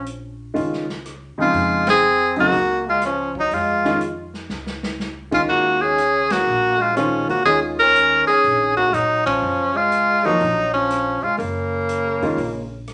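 Spiritual and hypnotic, this modal jazz excerpt swings at 122 BPM in 4/4, moving from Bbm11 to Ebm11 as a subtoned, vibrato-laden tenor saxophone carries the melody up front over a bright, forceful trombone second line with scooped notes. A clear but worn grand piano comps from 0.5 seconds, a woody, thumpy pizzicato upright bass holds the low end, and a vintage kit with dark cymbals and a punchy kick adds a fill at 4.5 seconds. Band accents land at 1.8, 6.2 and 9.2 seconds within a moderate large-studio reverb that keeps the sound soft at the top.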